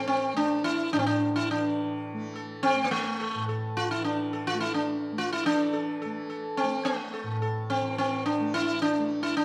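A mellow, plectrum-plucked sitar carries the melody up front, its buzzing tone and shimmering sympathetic strings giving each phrase a round, ringing body between A3 and A4. Beneath it, a softly plucked tanpura holds a drone from A2 to A3, sitting well back in the mix with its own gentle buzz and glow. This Indian classical passage, cut from a longer performance, moves in 7/4 at 106 BPM with a straight feel and gradually speeds up across its 9.4 seconds, tuned slightly below standard pitch at A4 = 438 Hz. The first passage gives way to a new one at 5.5 seconds, while both instruments sound together throughout. A moderate recital hall reverb surrounds the pair, lending the meditative, longing mood an open, resonant space.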